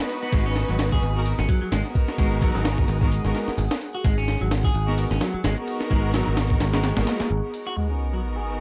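Breakbeat excerpt at 129 BPM with a swung, playful and funky feel over an Abm7 chord, where gritty, pitched-up sampler drums with a thumpy kick and high-tuned snare sit up front beside a bright, growly picked electric bass, while biting bowed string stabs and a clean semi-hollow guitar riff both run through low-pass filtering and tape echo, a deep, moody sawtooth pad with chorus and sidechain pumping drifts in the background from 1.5 seconds, and an electronic sub drop lands as an impact at 7.8 seconds in a dark production with light reverb.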